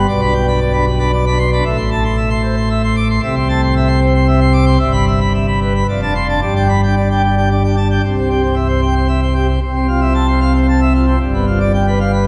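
Heard from further back in a reverberant church with a three-second decay, this brilliant, majestic fragment of a classical organ toccata in C major features a solo pipe organ on full plenum with mixtures and a romantic voicing, moving at 114 BPM in 3/4 through A minor and E minor colours before arriving on C at 8.0 seconds and closing on G7.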